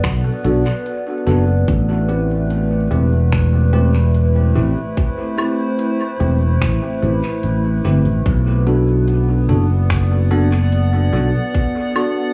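Ambient dub with a deep, hazy mood, heard as a short cut from a longer piece in a straight 4/4 feel. A warbling, lo-fi pad holds sustained chords with slow attacks and long releases, its detuned, nostalgic tone softened by chorus and its own reverb, while the harmony moves from Bm7 to Am7 at 1.7 seconds and back to Bm7 at 8.3 seconds. Up front, a fingered electric bass sounds growly and amped, sitting low and direct beneath a tight, produced electronic kick drum. A quieter organic electronic kit adds finger snaps, smooth hi-hats and woodblock, all carried on dub echo. From 0.4 seconds a bell-like tine electric piano plays clean stabs through lush chorus and dub echo, and the echo-heavy mix carries a layer of vinyl crackle and a touch of studio reverb.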